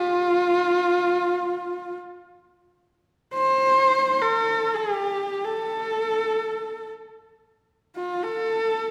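Mongolian folk music in free time: a single horsehead fiddle plays alone, proud and galloping in character, in an F gong mode tuned to A4 = 445 Hz. The bowed horsehair strings sound husky and boxy yet focused, sitting up front with a rich body as the line moves between F4 and C5. Vibrato colours the line, and portamento slides carry the player from pitch to pitch. The short passage, cut from a longer piece, states its opening phrase and then returns to the same material at 2.9 seconds, running to 8.9 seconds. A wet reverb of about 1.5 seconds, like that of a church or concert hall, surrounds the fiddle and gives it a spacious, resonant setting.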